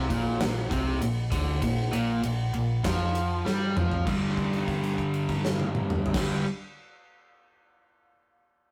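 Hard rock in G minor at 98 BPM, this short, driving and heavy cut comes from a longer piece and moves in a straight 4/4. Two warm, overdriven, picked electric guitars play the riff together in a low register throughout, one carrying a phaser and the other a semi-hollow body with a hollow-body tone. A dark, round hollow-body short-scale bass, fingered and amped, holds the low end with a punchy tone. The gated 80s drum kit sits up front with a punchy kick, medium-tuned snare, bright cymbals, crash, ride and toms, all in a gated stone-room sound that feels airy and polished. A drum fill from 3.5 to 4.1 seconds leads into the second section, where the harmony shifts from Bb5 to G5 and a held note rings from 4.1 to 6.1 seconds. The rough rehearsal-room recording has saturation and a moderate studio reverb.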